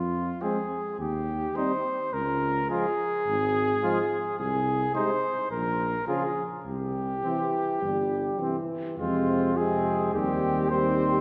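Heroic and solemn, this rubato classical brass quintet passage in 4/4 sets an up-front mellow cornet melody with light vibrato over a present, warm tuba bass, joined at 0.4 s by a soft-attacked trumpet second line in the background, a distant, roomy French horn and a vintage-toned trombone accompaniment, all moving through a chord progression that begins on F minor, in a wet concert hall heard from further back in the room.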